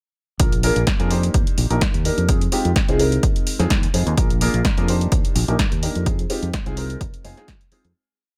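Funky and groovy, this short filtered disco house piece runs as a single drop from 0.4 seconds, with a fade-out beginning at 5.4 seconds. An up-front, punchy electronic kick drives a four-on-the-floor pulse, its analog character given a tape-warm tint. An analog drum machine supplies programmed closed and open hi-hats and a snare backbeat, sitting lower in the mix. A dark, round fingered electric bass plays a funky syncopated line with a direct tone, pumping through sidechain compression. A mellow baby grand piano carries a rhythmic chord riff in close voicing over Bb7, Ebmaj7 and Fm7, its short-sustain, natural sound swirled by a phaser and also ducking to the sidechain. A digital ambience surrounds the parts with a sense of space.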